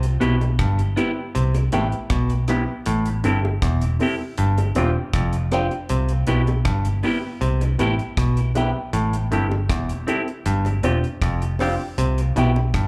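A clean, stringy clav riff played low through a combo amp opens this laid-back roots reggae fragment, together with a round, punchy, foam-muted electric bass sitting up front and a dry acoustic drum kit built on hi-hat, rim click and a tight kick. Moments later a scooped, hollow-body electric guitar joins on accompaniment, its clean fingered tone treated with phaser, tape echo and slapback echo. A mellow, woody upright piano adds boxy stabs in its middle register, and high-tuned bongos played with soft hands tap along in the background. Slapback echo colours the clav, piano and bongos as well, while the harmony cycles through Cmaj7, Am7 and G7sus4 in a relaxed 4/4 groove. The whole performance comes across as a live gig heard through the venue's PA, with light club reverb and a small-room ambience giving it a warm feel.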